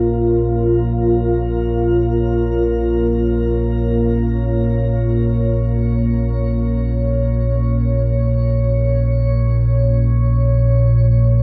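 In free time, this unsettling dark ambient drone hangs in Bb minor for its 11.4 seconds, a short cut from a longer piece. A deep, ominous drone rumbles up front from start to finish, its triangle and sawtooth tones swelling in slowly and held long, with built-in reverb and a lush chorus around them. Above it, a deep, moody ambient pad sustains chords from the opening, also up front, its detuned sawtooth unison, sine sub octave and wave-folded, ring-modulated edge giving a warm, dark body, dressed in chorus, built-in reverb and shimmer reverb. The harmony rests on Bbm until 9.5 seconds, when it shifts to a rootless Ebm7 over Bb. The whole sits in a huge, wet reverberant space with a long 8.1-second tail, and the top end is rolled off above 7.7 kHz, keeping the sound murky and dark.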